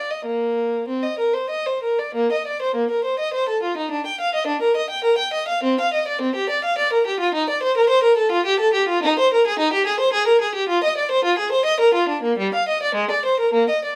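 A rich, focused solo violin, bowed by one player with vibrato and set up front, carries this radiant, dance-like snippet of a baroque-style suite movement in a rubato 3/4, moving into a new section at 2.2 seconds, captured by close, detailed microphones with light reverb.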